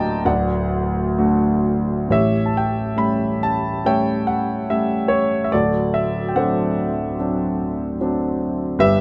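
A dark, mellow grand piano carries this brief classical passage alone, sitting up front with a long sustain. Its range reaches from a deep D1 up to B5. The mood is dark and wistful, unfolding in 4/4 with a flexible rubato that drifts between 62 and 78 BPM, and the instrument is tuned slightly above standard pitch at A4 = 441 Hz. The harmony opens on D, shifts to A7 at 2.1 seconds, and moves to D7 at 5.5 seconds, where a new section that began at 2.1 seconds continues. Close, detailed microphones and a light reverb give the playing an intimate, lyrical presence throughout this fragment cut from a longer piece.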